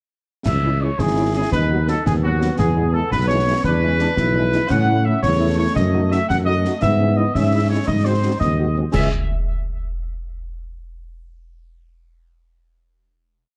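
A dark trumpet section carries the melody up front in this short, stern military-style march for wind band in 6/8 at 113 BPM, its distant, roomy tone coloured by analog delay and plate reverb, while a mellow tuba holds sustained bass on the beats and a marching snare rides over bass drum and dark clash cymbals with a gritty, vintage-sampler edge. Behind them, a warm French horn section plays after-beat chords from 0.6 seconds with light vibrato, and a soft-attack trombone section adds a sustained counter-melody from 1.0 seconds. The resolute progression in C# minor arrives at a final chord at 8.9 seconds.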